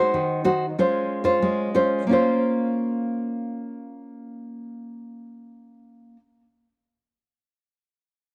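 A dry, gritty recording with light reverb frames this short cut from a longer samba in Bb minor, moving at 93 BPM in a straight 4/4. A lone nylon-string guitar carries the whole passage from 0.0 to 6.2 s, sitting up front with a warm, deep classical tone and an analog delay trailing its notes. The fingerpicked playing spans Eb3 to C5, and audible finger squeaks add a close, human texture. The opening phrase moves from Ab7 to Dbmaj7/Ab, then at 2.1 s a new passage settles onto Bbmadd9. The mood is nostalgic yet lively, a brief glimpse of intimate, unaccompanied samba guitar.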